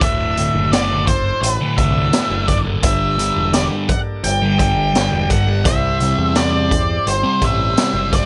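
A dark, up-front octave-fuzz lead guitar carries the melody through this 8.3-second cut from a longer psychedelic rock piece, its picked, distorted line sitting high over the band. Beneath it, a double-tracked fuzz guitar plays a picked riff through a phaser, while a growling, round electric bass with overdrive holds down the low end. A bright, shouting tonewheel organ sits in the background with sustained chords, lightly overdriven through a slow rotary speaker. The raw garage drum kit is upfront and gritty, with a high-tuned snare, a boomy kick, hi-hat and a pumping small-room sound. At a straight 85 BPM in D mixolydian, tuned to A4 = 445 Hz, the harmony moves from Dadd9 to Gmadd9 at 2.8 seconds and to C at 5.7 seconds, giving a trippy, kaleidoscopic mood. The mix is dry, with little reverb and a top end that stops at 10.9 kHz.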